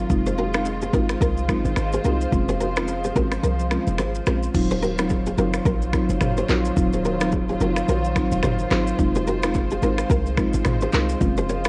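Afrobeats at 108 BPM in Eb dorian, with a mellow, sultry mood and a swung sixteenth-note feel, cut from a longer piece. A deep house drum kit with a deep, up-front kick, snaps, handclaps, rim clicks, shaker, toms and crash carries a gritty vintage sampler texture. A boomy, sine-like 808-style bass sits beneath it, while very quiet, bright congas and bongos add a compressed, saturated layer. A buzzing marimba played with soft mallets offers woody, round accompaniment, and a dark, lush string section holds bowed chords that pump with sidechain compression. A fingerpicked nylon-string guitar riff with digital delay floats on top as the harmony moves from Fm7 and Dbmaj7/F to Ebm69 and back to Fm7. The kick drops out at 3.4 s and returns at 4.5 s for the second section, and the whole mix wears a small-room ambience and a worn, warbling cassette-tape pitch drift.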